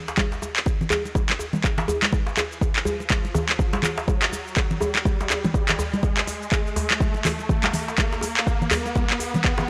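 A deep, up-front electronic kick drives this earthy, hypnotic afro house build-up at 123 BPM with a swung 16th feel, alongside a produced drum kit of crisp hi-hats, handclaps and shaker, close, dry congas struck with hard hands, a tight, cracking djembe in a small room, and an electronic riser climbing under the full 9.7 seconds, all carried in a gritty, cassette-tinged mix with transformer saturation and light reverb in this excerpt from a longer piece.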